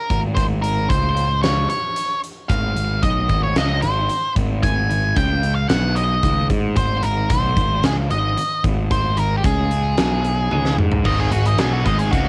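A dark, up-front octave-fuzz lead guitar carries the melody in this anthemic, bittersweet stretch of quiet-loud alternative rock, cut from a longer piece and captured as a home cassette recording with little reverb. A round, overdriven picked bass sits up front beside a huge acoustic arena kit with a fat snare and punchy kick, holding a half-time feel until a drum fill at 10.5 seconds, while a very quiet, scooped clean electric guitar adds arpeggios from 2.5 seconds. A bright, thick fuzz guitar riff joins in the background at 11.0 seconds, and at 11.1 seconds the lead turns to a solo.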